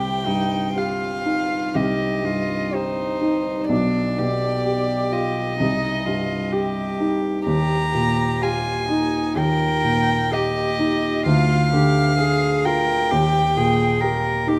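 Freely pulled rubato stretches each bar of this slow 4/4 movement, a short, melancholic, elegiac passage cut from a longer romantic piano trio. The violin carries the melody from the opening, its tone dark and intimate, played sul tasto with a soft attack, light vibrato and a smooth top, and it sits up front in the mix. Beneath it, the cello sings a second line that is clear, pure and slightly nasal, also bowed sul tasto with a soft attack, giving it a floating quality. The baby grand piano supplies the accompaniment, warm and open with a long sustain, reaching down into its low register and standing forward alongside the violin. The harmony moves from C minor through G7/B and back before turning toward Eb and a diminished chord. Close, detailed microphones catch the intimacy of the trio, set in a moderate recital hall reverb of about 1.4 seconds, and the violin falls silent just before the cello and piano end together at 14.6 seconds.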